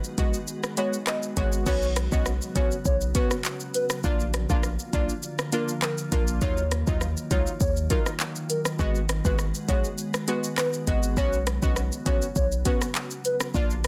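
Hypnotic and bouncy, this dancehall groove in straight 4/4 is a short cut from a longer piece, built on an electronic afro-pop drum kit sitting up front, with a deep kick, smooth hi-hats, handclaps, rim clicks, shaker and crash cymbal. Underneath, a hard-hitting 808-style bass enters at 0.2 seconds, punchy and heavy with a fast attack and decaying sine tone layered with noise. A glassy FM pad holds sustained chords from the start, its slow attack, long release, ensemble chorus and built-in reverb giving an ethereal haze that pumps through sidechain. Bright, detuned synth brass stabs add punchy, plucked accompaniment with chorus, while a hollow, woody clarinet-like synth lead carries the melody with a soft attack, vibrato, chorus and digital delay, keeping a dark, gentle colour. The chords cycle from Abm7 through Bsus2, Bb and Ebmadd9 before returning, all framed in a digital ambience and a dense, heavily limited modern master.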